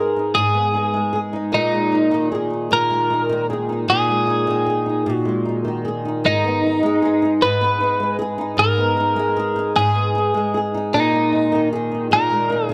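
A light studio reverb surrounds this melancholic pop excerpt in 6/8, where a bright, clean, compressed twelve-string electric guitar picks an aching melody up front over a double-tracked, fingerpicked flamenco guitar with a warm acoustic tone, also up front, and the same passage repeats from 6.2 seconds.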